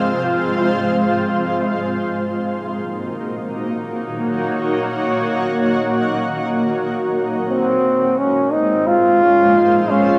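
In free time, this deep, meditative ambient fragment in Eb dorian opens on a cloudy, blurred granular pad that sustains slow-attack chords from Ab6 through Ebm7, sitting up front with its own built-in reverb. At 7.5 seconds the harmony moves to Dbmaj7 and a warm solo trombone enters with a classical-style melody, carrying light vibrato and a distant, roomy quality under dub echo. The echo-heavy mix is bathed in wet spring reverb and a small room, and the passage is cut from a longer piece.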